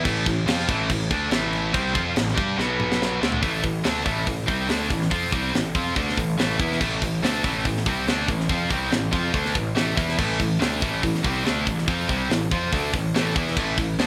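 Light reverb gives this heavy metal passage the feel of a band playing live in one room, a short cut from a longer piece. At 142 BPM in straight 4/4 and A minor, the mood is aggressive and relentless, with a bright, double-tracked distorted guitar riff sitting up front across the full 14.1 seconds. Beneath it, a picked electric bass runs through overdrive and fuzz for a growly, amped tone, while the acoustic drum kit brings a high-tuned snare, tight kick, bright cymbals, hi-hat, crash and toms. The opening section holds on A minor before a drum fill from 2.6 to 3.4 seconds, as the harmony shifts through B5 and D5. At 3.4 seconds the band returns to A minor and settles into a longer second section that carries through to the cut.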